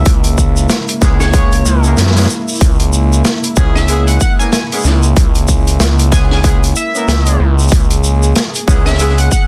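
Glitch hop cut from a longer piece, gritty and playful, with a swung sixteenth-note feel over a single C#m7 chord. A punchy, overdriven electronic kick and an aggressive, resonant sawtooth synth bass with tube saturation sit up front, while a crunchy breakbeat kit of hi-hat, shaker and medium-tuned snare adds a saturated, rolled-off layer. An edgy, tearing sync lead with chorus, cassette tape colour and digital delay carries the melody, a detuned analog pad with sidechain pumping holds chords in the background, and a mellow jazz horn section enters at 1.0 s with octave-doubled stabs, all within a dense, heavily limited master with light reverb.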